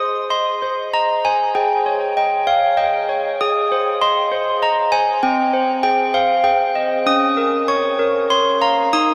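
Clear, ringing handbells with hard clappers open this tender classical lullaby, playing alone and up front across a range from C4 to Eb6 in a steady three-beat pulse. Their bright tones drift through a diffuse ambient delay and a huge, wet reverb with a 7.9-second tail, giving the short passage, cut from a longer piece, a dreamy, soaked atmosphere. The gentle harmony moves from Ab through Eb7/Ab and back before settling on Ab/C and Bbm/Db.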